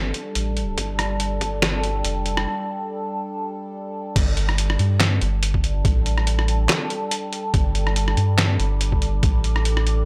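A detuned, resonant sawtooth drone with moving overtones, chorus and built-in reverb holds a Gsus2 chord over a deep, round, up-front sub bass, opening this heavy, meditative deep dubstep excerpt at 142 BPM in a swung half-time feel, while a gritty, pitched-down sampler-style kit of up-front medium-tuned snare, hi-hat, rim click, handclaps and crash joins, a compressed, thumpy kick, re-recorded in a large room, appears briefly at 0.8 seconds, a break arrives at 2.5 seconds, and the kick returns for the drop at 4.2 seconds, all within a dry hardware sound touched by light digital ambience.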